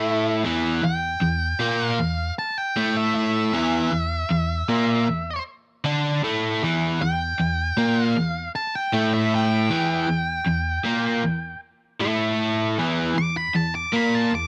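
Brooding and smoky, this rock excerpt moves at 78 BPM in a straight 4/4, sitting on E minor, with an octave-fuzz lead guitar carrying the melody as a solo through the full 14.5 seconds, its dark, distorted tone reaching from E4 to D6. Beneath it, an overdriven electric guitar plays the riff, double-tracked and compressed, low in register from E2 to D4, while both guitars sit up front. The sound is dry and close, in the manner of a 1970s studio, with a touch of digital ambience.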